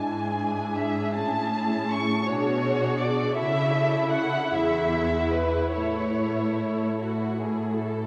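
Muted violins carry the melody up front, veiled and dark with vibrato, in a slow, rubato romantic movement for chamber string orchestra in A major and 6/8, moving at roughly 48-56 BPM in dotted quarters with a serene, warm mood. A second violin line with a soft attack and smooth top, close con sordino violas, and distant cellos on the bass round out the harmony, with the melody ending at 7.0 s while the lower parts sustain to 8.1 s. The whole ensemble sits in a vast, echoing cathedral-like space, and the passage is cut from a longer piece.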